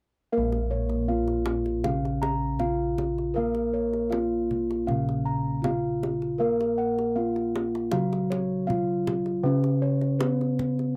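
A dry, close 1970s-style studio sound frames this brief, shimmering and hypnotic Javanese gamelan passage in Bb pelog at 79 BPM in 4/4, where a mellow, airy bronze metallophone struck with padded disc mallets carries the melody over a dark, smooth second metallophone played with a wooden mallet, round, beating bossed gongs sit up front with arpeggios, softer padded-beater bossed gongs hold the bass, and a tight, compressed, saturated kendang struck with hard hands drives the pulse from 0.5 seconds.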